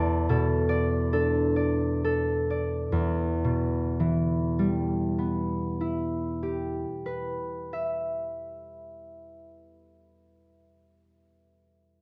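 Rubato and slowing through its opening 2.9 seconds before moving into a new section, this wistful, mysterious classical excerpt features a solo concert harp, fingerpicked and ringing from E2 to A5, placed up front in a dark production and surrounded by the bloom of a reverberant recital hall.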